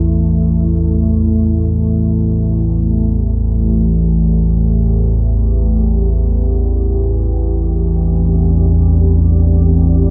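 An up-front analog drone anchors this cavernous, ominous dark ambient passage, its nasal, evolving sawtooth and pulse-wave tone slowly shifting under a moving notch and chorus. Behind it, a deep, moody pad of detuned sawtooth voices with a sine sub octave holds sustained chords in its own reverb, moving from A5 to C/A at 5.1 seconds. The dark production and light reverb give this short excerpt from a longer piece a shadowy, enveloping weight.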